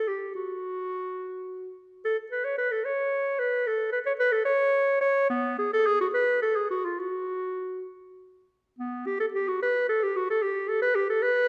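A lush recital-hall reverb with a 1.7-second decay surrounds this short, solemn fragment of a baroque-style fantasia, cut from a longer piece. A single clarinet plays unaccompanied from 0.0 to 11.5 seconds, its tone clear and present as it sits up front, ranging from B3 to C#5. The 6/8 line moves with a free, rubato feel, giving the music an introspective, contemplative character, and the opening phrase returns at 8.8 seconds.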